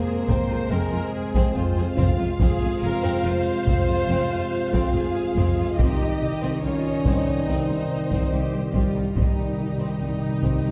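Heard from further back on a wet scoring stage, this relentless, dramatic cinematic excerpt in F minor at 71 BPM sets warm, vibrato-rich violins carrying the melody and a second line over lush violas, distant mellow horns and background trombones holding sustained chords, a rich double bass and very quiet cellos on the bass, and hard-stick taiko drums, with round, soft-mallet timpani adding a fill from 5.8 seconds as the harmony moves from Fm to Cm.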